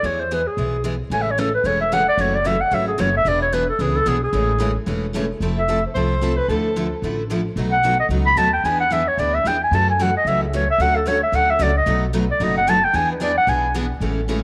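A breathy clarinet opens this lively, charming gypsy-jazz swing at a brisk 223 BPM, playing a mellow, whispered solo up front with light vibrato and scooped notes over a picked steel-string acoustic guitar and a woody, thumpy pizzicato upright bass on gut strings, with a second bright, fresh-stringed guitar joining at 1.1 seconds. A distant, roomy soprano saxophone slips in briefly between 5.9 and 7.0 seconds as the harmony moves from Fmaj7 to Dmadd9, and then B9 leads back toward E7. A moderate plate reverb gives the intimate, vintage-tinged performance a gentle sense of space in this cut from a longer piece.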